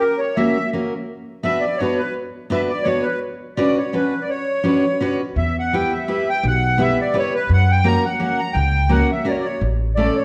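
A reedy, sweet accordion with a light tremolo tuning opens this nostalgic, bittersweet musette waltz in B minor at 169 BPM, joined almost at once by a bright, full-bodied picked dreadnought acoustic guitar whose finger squeaks stay audible up front. At 5.4 seconds a woody pizzicato upright bass with steel strings and a touch of tube saturation enters beneath them as the chords move through Bm, Bmadd9, Em and F# before landing on A. The whole excerpt sits in a wet recital hall reverb and carries the worn, warbling pitch drift of old cassette tape, cut from a longer piece.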